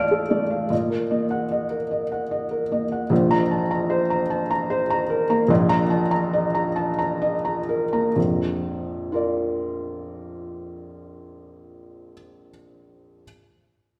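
A felt-muted upright piano plays alone from the first moment, its soft, mellow tone sitting up front with a slightly boxy character and the audible noise of its action close to the ear. This tender, intimate fragment of neoclassical minimalist piano moves in a loose, rubato triple metre, gradually slowing between 1.9 and 8.2 seconds as its chords hover over a Bb bass before settling on Bb major. A wet recital-hall reverb surrounds the piano, lending the close, muted sound a gentle sense of space.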